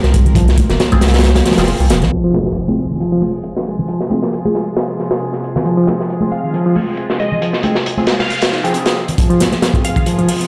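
Gritty and energetic, this breakbeat excerpt in F minor pentatonic runs at 136 BPM with a light swing, built on a crunchy, saturated acoustic drum kit with a punchy kick and rolled-off top, backed by distant congas and bongos, a metallic electronic hi-hat, and a deep, thick sub bass that drops out at 2.1 seconds. A reedy electric piano riff with tube saturation and 12-bit sampler grit carries the piece over pumping, gut-toned bowed strings and a nasal, band-passed chord stab with phaser, while a glassy, crystalline wavetable pluck melody enters at 6.3 seconds through a telephone-like filter. Background impacts, a noise sweep and a riser accompany filter sweeps across the strings and stab, leading into a build-up from 9.2 seconds, all set in a plate reverb with the character of a bare stone room.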